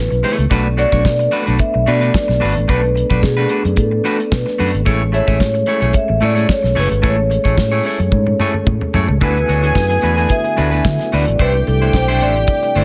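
A ringing, soft-mallet vibraphone melody opens this glamorous, danceable disco excerpt over a punchy, round fingered bass and a mellow, lightly overdriven tonewheel organ with chorus vibrato and fast rotary speaker sitting in the background, joined almost at once by a clean, picked electric guitar with a warbly pitch drift and a dry, damped 70s drum kit with a fat snare and tight kick, and after a drum fill at 8.1 seconds a distant, reedy string section with gut-string tone enters at 9.2 seconds as the harmony shifts.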